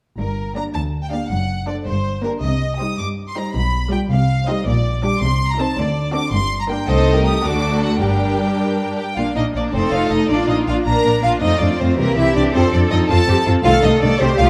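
A dark, roomy string-orchestra sound in a recital hall fills this short cut from a quick classical-period movement in 6/8 at 107 BPM, restless and stormy, with rubato pulling at the pulse as G minor gives way to Bb major at 9.2 s. An up-front, clear first violin section carries the melody with smooth vibrato over a focused, close double bass section and a lush, distant cello section holding the bass. From 0.6 s a second violin section adds an even second line and the violas fill in the accompaniment with expressive portamento.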